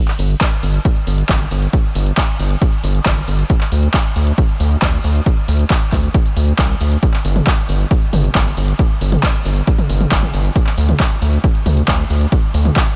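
A gritty, saturated synth bass drives this uplifting trance excerpt, its square and sawtooth tones with oscillator sync sitting up front between G1 and D2 and pumping against the sidechain from 0.2 s. Alongside it, a punchy electronic kick and a tape-warm analog drum machine of handclaps, hi-hat and toms drive a straight 4/4 pulse at 136 BPM. A light reverb frames the soaring, emotional mood.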